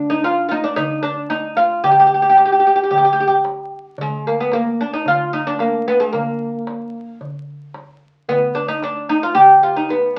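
A straight, even four-beat pulse carries this stately, passionate excerpt from a longer Arabic maqam ensemble piece, built on maqam saba and tuned with A4 at 438 Hz. The fretless oud leads the melody, its plectrum-plucked double strings sounding deep and woody, placed up front and moving through a range that reaches down to a quarter-tone-inflected A-flat in the low register. Beneath it, a darbuka with a clay shell and natural skin adds a warm acoustic pulse from the opening moments, sitting far back in the balance with a small-room character. The music falls into two parts, with the second beginning at 4.0 seconds and running until the oud's final note at 10.2 seconds. Moderate studio reverb surrounds the ensemble, and the whole is heard through the crackle and aged character of a very old 78 rpm record.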